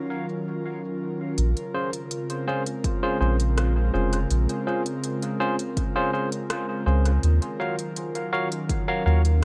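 Ambient dub at 82 BPM in Bb minor, this meditative, hazy excerpt from a longer piece opens with an airy, breathy pad holding sustained chords alone, its detuned, chorused layers carrying an Ebm9 harmony. At 1.4 seconds a soft, round sub bass arrives with the drums and the music settles on Bbm9, before returning to Ebm9 at 7.2 seconds. The organic electronic kit keeps to hi-hat and rim click, with smooth hats set low under small room ambience and dub echo. A bright, barky tine electric piano plays stabs through a combo amp, its clean tone trailed by dub echo. A deep, tape-warm electronic kick, re-recorded in a small room, joins from 2.8 seconds and sits up front beside the bass, in a mix that leans on echo rather than reverb.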